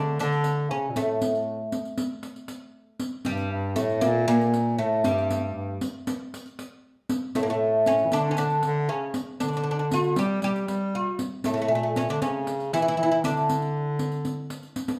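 Arabic maqam ensemble music in D maqam suznak, passionate and stately at 117 BPM in a straight 4/4, with a woody, plectrum-plucked fretless oud carrying the melody on its double strings up front, a clear, soft-attacked bass clarinet in classical style providing a roomy second line beneath it, and a close riq with dark jingles keeping time until a drum fill at 14.8 s closes this excerpt, all played live together in one room with a moderate large-studio reverb.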